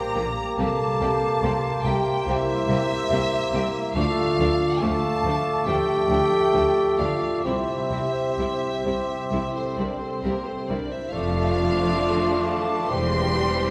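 Flowing in a free, rubato four-beat pulse, this tender, serene slow romantic movement for symphony orchestra is cut from a longer piece, with a lush, softly attacked violin section carrying the melody over mellow French horn chords and ringing harp arpeggios. Around it, an airy, hollow flute, a distant cor anglais, a close-miked clarinet and a second, very quiet and focused violin section add second lines, while bassoon and a viola section with portamento fill out the accompaniment and rich cello and warm double bass sections hold the bass. A wet concert hall reverb gives the orchestra a spacious, glowing setting.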